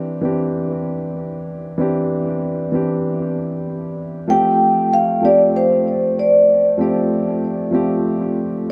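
A dark, smooth, vintage grand piano sits up front with dub echo, laying down D9sus4 then G9sus4 in this wistful, relaxed chillout excerpt at 96 BPM with a light 16th-note swing, while a metallic, ringing soft-mallet vibraphone with slow motor vibrato and tape echo carries a brief boxy-room melody from 4.3 to 6.6 seconds, all bathed in a wet spring reverb and an echo-heavy mix.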